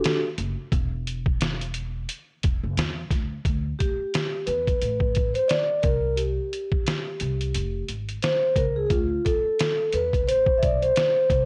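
A swung, loping groove from a gritty, pitched-down sampler-style drum kit, with a thumpy kick, hi-hat and a medium-tuned snare sitting up front, sets a cool, nocturnal jazz-hop mood in this excerpt. A dark, woody pizzicato upright bass joins at 0.4 seconds beneath a mellow, close-miked vibraphone played with soft mallets, which takes a ringing solo from 3.4 seconds over shifting chords. Light studio reverb and the warble of worn cassette tape give the whole recording a drifting, lo-fi haze.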